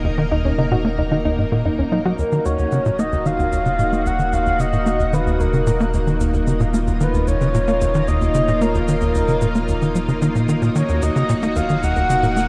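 Bathed in a huge ambient reverb, this hypnotic, expansive stretch of sequencer-driven space music rests on lush vintage string-machine chords, a deep round sub bass and a tight, punchy, saturated sequencer-bass riff with delay, while a soft, nasal pluck plays arpeggios until 2.2 s, when a breathy, flute-like synth lead with lush chorus and vibrato carries the melody up front and dry analog cabasa and bongos fade in, joined from 2.8 s by a very quiet, twinkling granular shimmer.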